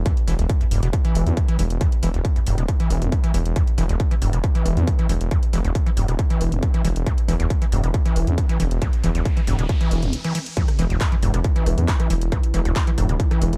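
A driving 4/4 pulse at 137 BPM anchors this intense, hypnotic peak-time techno cut in E minor, where an overdriven, distorted kick sits up front over a layered kit of handclaps, hi-hat and rim click, a thick, beating detuned saw bass pumps beneath a squelchy, resonant acid riff carrying chorus and analog delay, a background riser and sub drop build to a short break at 10.1 seconds before the drop lands at 10.6 seconds, and an eerie metallic FM drone enters at 11.6 seconds, all captured in a dry, gritty hardware sound.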